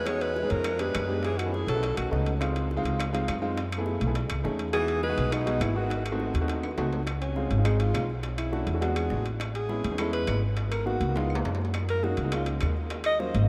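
Bathed in a huge, wet reverb that suggests a vast, echoing hall, this sunny, lively Afro-Cuban jazz excerpt sets a mellow alto saxophone with vibrato and scooped notes over a dark, thumpy pizzicato upright bass, an intimate grand piano with audible action noise, round low-tuned bongos, woody claves and ringing metal-shell timbales, while a distant, subtoned tenor saxophone adds a very quiet second line until 6.1 seconds, and after a drum fill the alto takes a solo from 7.1 seconds.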